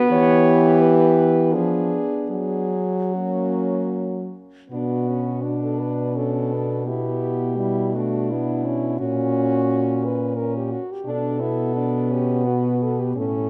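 Classical and lyrical, this short excerpt for French horn quartet sits in B minor with an elegiac, yearning mood, moving in a flexible, rubato 3/4 at roughly 73-88 BPM. Three mellow horns carry the upper parts, with one singing the melody, a second tracing an inner line beneath it, and a third filling in the accompaniment. The melody and second line are smooth at the top, the second line also soft in attack, while the accompaniment has a vintage color. A dark horn holds the bass, closely captured and set up front, anchoring the low register. The opening passage leans on Em, a diminished chord and F# before a new section begins at 4.7 seconds on Bm, wandering through a Bmadd11 color and F#/A# before settling back to Bm. The players sound close and detailed, yet a moderate concert hall reverb lets each phrase bloom and linger in the room.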